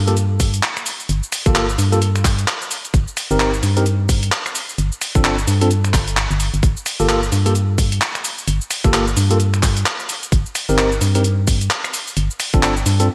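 Shiny, 1980s-style digital production with light reverb and a layer of vinyl crackle frames this short two-step UK garage excerpt, which moves at 130 BPM in G minor with a skippy, soulful swing on the 16ths. A hollow, organ-like FM bass sits up front from the very start, its fast attack and dark decay giving the low end a percussive bite. A sampler-style breakbeat kit of finger snaps, handclaps, hi-hat and shaker arrives at 0.1 seconds, gritty and compressed with a tape-tinged character and gated reverb, joined at 0.4 seconds by a tight, layered electronic kick that punches through as the loudest part. Over this, a worn, slightly out-of-tune tine electric piano plays clean, direct stabs touched with subtle chorus and delay. The harmony opens unaccompanied by chords before settling into Cm7/G, Dm7/G and a lingering Gm9, all over G in the bass.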